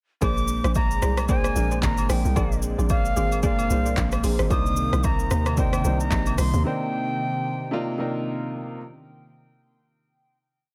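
A swung, hypnotic amapiano groove of overdriven deep house drums (punchy kick, handclaps, hi-hat, steady shaker and syncopated rim clicks), hollow, bouncy log drum bass bursts and a faint agogo and woodblock timeline carries a soulful whole piece in which a clear, worn grand piano pushes spread Bb9 and Cm9 chords, a smooth, warbling analog pad pumps softly in the background, dark chorused and phased chord stabs with tape echo punctuate until 4.4 s, and a reedy, airy concert flute sings short call phrases through tape echo, the beat and bass dropping away at 6.6 s so piano and pad finish alone at 8.8 s in a dry, close sound.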